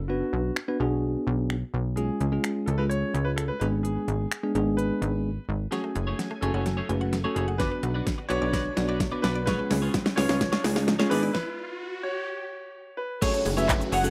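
A punchy, sidechain-pumping analog bass drives this bittersweet 128 BPM dance-pop excerpt in F# harmonic minor, joined by a knocking, crisp pop drum kit, a bell-like tine electric piano and a polished baby grand piano melody with plate reverb and delay; at 5.7 s, shimmering string-machine violins, a woody synth pluck playing arpeggios and a compressed twelve-string electric guitar riff join a build-up, with a background riser and downlifter entering at 8.2 s and a stop at 11.3 s, before an airy, dreamy, detuned lead takes over the melody at 13.2 s, all in a rough home-demo mix with light reverb.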